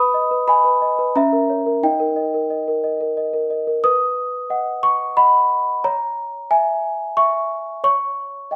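A lone celesta opens this fragile, wistful classical lullaby, its bell-like, sweet tone sitting up front with a slightly boxy character as it moves between C#4 and D#6 at 90 BPM in 3/4. The harmony drifts from G#m/B through A#dim/C# to D#, then settles into a second passage at 3.8 seconds on B and C#m before the chords fall away at 7.8 seconds. A moderate recital hall reverb surrounds the delicate playing in this brief passage cut from a longer piece.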